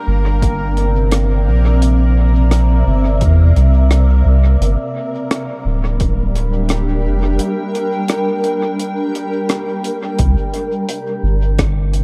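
A blurred, granular cloud pad and a bubbling, resonant sawtooth texture with random filter steps and chorus open this meditative, spacious ambient dub excerpt at 86 BPM, soon joined by a round, up-front sub bass, a punchy layered electronic kick and a dark, dry reggae kit of hi-hat and rim click trailing dub echo, moving from Cadd9 to Gm and back, with the bubbling texture dropping out at 10.2 seconds.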